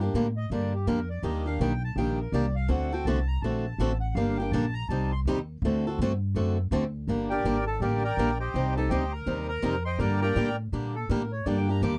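A reedy, dark accordion carries a solo over a short cut of acoustic string swing in G minor, entering at 0.4 s with a smooth, slowly beating tone that sits a little behind the other parts. A bright, boxy picked acoustic guitar with fresh strings and a woody, thumpy upright bass on gut strings sit up front, swinging at 164 BPM through chords that move from Gm to Ebmaj7, D7 and Cm across two passes of the same section. Recorded with little reverb, the bittersweet, swinging mood stays close and direct.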